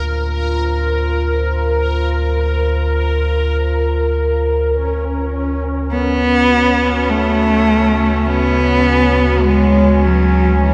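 A huge, wet reverb with a long tail surrounds this dark, ominous ambient drone, an excerpt cut from a longer piece that drifts in free time. Up front, a deep rumbling drone sits low with a slow attack and long release, its sawtooth edge shaded by a phaser. Above it, a moody pad of detuned, wave-folded and ring-modulated tones holds sustained chords with chorus, fading out over the first 4.7 seconds. A bubbling texture of resonant, randomly stepping filters churns in the middle register, softened by chorus. At 5.9 seconds a single bowed cello enters up front, its warm, nasal, boxy tone carrying an expressive melody with vibrato and portamento, trailed by a diffuse delay.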